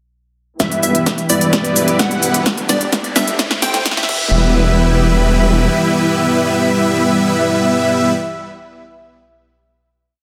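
A dense, heavily limited modern master with light digital ambience frames this short, euphoric festival progressive house piece in E minor at 129 BPM, where a build from 0.6 s drives a huge, thick supersaw riff, sidechain-pumped strings with vintage 12-bit sampler grit, and a punchy, catchy plucky unison lead with digital delay through filter sweeps over an Em, G, Am, Em progression. A menacing, beating detuned saw bass drives eighth notes beneath an overdriven big-room kit with crisp hats, crash, cabasa and a backbeat snare, while a punchy electronic kick sits in the background and a very quiet riser joins at 2.2 s. The drums fall away at 4.2 s as the final hit lands at 4.3 s, leaving the lush, bowed string pad, lead and supersaw ringing to 8.1 s after the bass stops at 5.7 s.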